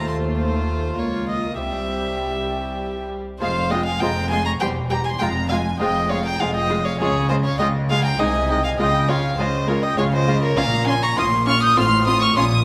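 In a straight triple metre, this stormy, driving passage from a baroque-style concerto movement sets an up-front solo violin, with its airy bow and nasal gut-string tone, over a close violin section singing the high melody with light vibrato, while a second violin section plays a supporting line in the background. Beneath them, a viola section with a smooth top and a distant cello section fill out the chamber ensemble, a rich double bass section anchors the low end, and a very quiet lute adds delicate fingerpicked double strings. Everything sits in a wet concert-hall reverb with some lossy compression artefacts, and at 3.4 seconds the passage moves into a new section whose harmony travels from F minor through D-flat and B-flat minor before the passage is cut off.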